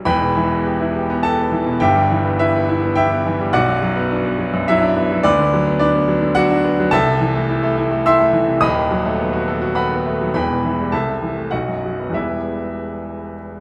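Set in 3/4 at 104 BPM with a flexible, rubato feel, this classical virtuoso piano study in E minor unfolds with a stormy, passionate mood. A bright grand piano plays alone throughout its 13.6 seconds, its brilliant, natural tone placed up front and ranging from a deep D#1 up to E6. Close, detailed microphones capture the instrument inside a recital hall whose moderate reverb, with a 1.7-second decay, adds a sense of space around the notes. The harmony moves from E minor through B minor and A minor to a B7 chord, then quickens toward the end, passing through A minor and B before settling back on E minor at 12.1 seconds. Cut from a longer piece, the passage feels like a fragment of an urgent, restless study.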